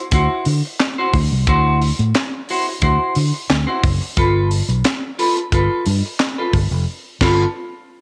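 A straight 4/4 funk groove at 89 BPM in D mixolydian drives this energetic, playful excerpt, with a tight acoustic drum kit of high-tuned snare, tight kick, hi-hat, handclaps and crash cymbal sitting up front beside a punchy, amped fingered electric bass and a clean, picked electric guitar with subtle chorus comping over D9 and then G9 from 4.2 s, all in light small-room reverb before a band accent at 6.9 s.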